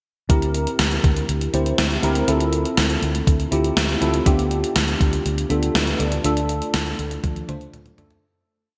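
A straight 4/4 pulse drives this short, dramatic and moody piece of 1980s-style pop, anchored by a big backbeat from a gated 80s digital drum machine whose thumpy kick, gated-reverb snare, hi-hat and toms sound sampler-like, overdriven and up front, as if re-recorded in a small room. Beneath it, a vintage muted fingered electric bass plays a driving eighth-note line on a low D, its tone dark, round and foam-muted through an amp. A worn, slightly out-of-tune tine electric piano, mellow and clean through a combo amp with analog chorus and shimmer reverb, pushes close-voiced chords and slips in short fills. The harmony moves from C7/D to Fmaj7/D and G7/D before settling on D minor, all within a single verse. A fade-out begins at 6.2 seconds, and a drum fill arrives at 7.2 seconds, all set in a lush hall reverb with bright 1980s-style digital production.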